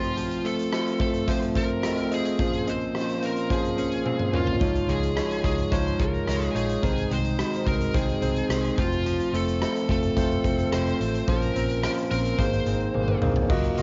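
1980s-style pop at 108 BPM with an uplifting, romantic mood, this short cut from a longer piece sets a biting overdriven lead guitar melody over up-front, bell-like tine electric piano chords moving from F through Bbmadd9 and Dbadd9, a clean direct-recorded guitar riff with subtle chorus tucked in the background, and a huge arena drum kit with a punchy kick and fills at 4.1 and 12.9 seconds, while a dark, round, foam-muted fingered bass joins at 4.6 seconds and a barely audible ethereal pad surfaces at 13.5 seconds, all colored by a lo-fi cassette home-recording sound and light room reverb.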